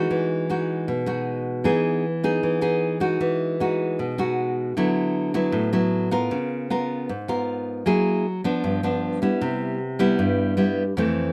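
A fingerpicked nylon-string guitar plays alone and up front throughout this relaxed, breezy bossa nova excerpt, its fresh strings giving a warm, classical tone in a moderate studio reverb. At 155 BPM in 4/4 with a straight feel, it moves through rich chords in E major, from Emaj9 through D69, C#6, F#9 and G7, before shifting into a new section at 9.4 s on Cmaj7.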